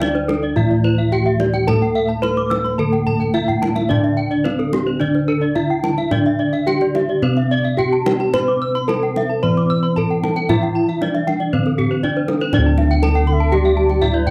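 A dry, close 1970s-style studio sound with light reverb frames this ceremonial, shimmering cut from a longer Balinese gamelan piece in D slendro at 108-121 BPM, where a bright horn-mallet bronze metallophone carries the melody over a mellow, padded-mallet metallophone accompaniment in the background, two ringing metallophones (one airy, the other close-miked and full with slapback echo) spin arpeggios with paired-tuning beats, round bossed gongs anchor the bass, a distant kendang played with hard hands adds a fill at 3.2 seconds, and a reedy bamboo bansuri with vibrato slips in a second line at 13.1 seconds.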